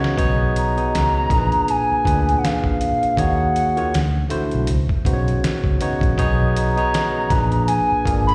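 A drum fill from a dusty, sampler-style kit with a thumpy kick and fat snare opens this soulful, sultry neo-soul R&B excerpt alongside a dark, round, foam-muted electric bass and a barky, lightly overdriven tine electric piano sitting up front with plate reverb and slapback echo. At 0.6 s a hollow, woody synth lead with a clarinet-like tone enters, its soft sustained notes carrying vibrato, chorus and analog delay over lush extended chords such as B69, Bb7b9 and Ebm11. The swung groove sounds like a live gig heard through the venue's PA, with a recital hall's reverb around it.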